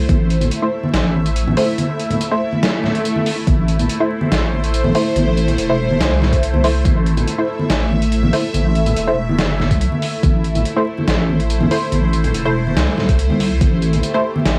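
Through a cassette-worn haze with vinyl crackle and a moderate booth ambience, this dark, meditative deep dubstep excerpt in A minor moves at a half-time 142 BPM, as a bright, tense bowed-like drone with phaser and reverb holds sustained chords over a deep, saturated wobble bass up front, muted sawtooth dub chord stabs with echo and a filter sweep, an overdriven knocking kick landing at sparse moments from 0.1 s, gritty pitched-down sampler hi-hat and snare, distant low-tuned congas, and a brief electronic swell at 2.8 seconds.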